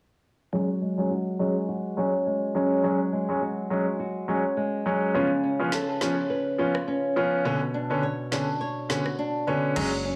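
A clear, intimate concert grand piano and a bright, fingerpicked flamenco guitar open this dancehall excerpt together at 0.5 s, both up front and shaded by a low-pass filter as a filter sweep runs beneath them. The mood is tough and sultry, set at 104 BPM in 4/4 with a 56% swing on the 16ths, while the chords move from F#sus2 to C#7 to Bmadd9. The piano carries the accompaniment with audible action noise and long sustain, and the guitar's fresh strings spin arpeggios alongside it. At 5.7 s an electronic afro-pop drum kit arrives with a woody snare, rim clicks, metallic hi-hats and crash cymbal, its tape-colored sound sitting lower in the mix. A thick, saturated sub bass lands on F#1 at 9.8 s, just as the clip is cut from the longer piece, all within light reverb and small room ambience.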